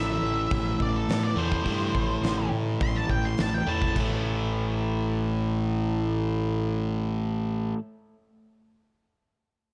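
Gritty and swaggering, this short classic rock excerpt in A minor moves at 104 BPM in a straight 4/4, opening with a dark, fuzzy octave lead guitar solo up high over an up-front overdriven rhythm guitar riff and a fuzz-soaked fingered bass. A huge arena drum kit with a fat snare, punchy kick, crash and hi-hat sounds big and smooth with a rolled-off top, playing from 0.5 to 4.1 seconds. When the solo stops at 4.0 seconds the harmony shifts from Am to A5, and the compressed riff and fuzzy bass carry on in light reverb.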